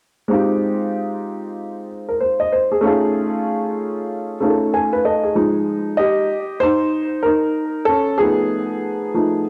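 A woody, slightly detuned upright piano sits up front, carrying this nocturnal, smoky hip hop excerpt alone at 95 BPM with a swung 16th feel in F minor, moving between Fm9 and F7alt, slipping in a fill at 4.4 s before stepping into a solo from 5.4 s, all colored by cassette tape, a moderate spring reverb and the ambience of a small room in a home recording.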